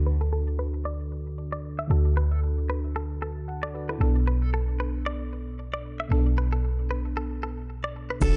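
The recording has a dark, warm digital ambience, with its top end gently rolled off. This romantic, breezy afrobeats excerpt moves at 114 BPM in 4/4 with a light sixteenth-note swing, shifting from D to Bm7 under a filter sweep. A boomy, up-front 808-style bass anchors the low end. Around it, a soft, round FM electric piano carries the accompaniment with chorus and tremolo, adding a short fill at 3.0 seconds. A twangy, clean guitar recorded direct plays a compressed, picked riff through tape echo and a low-pass filter. At 8.2 seconds, a whispered, intimate alto saxophone arrives together with an overdriven electronic afro-pop kit, marked by a deep kick, crash cymbal and shaker.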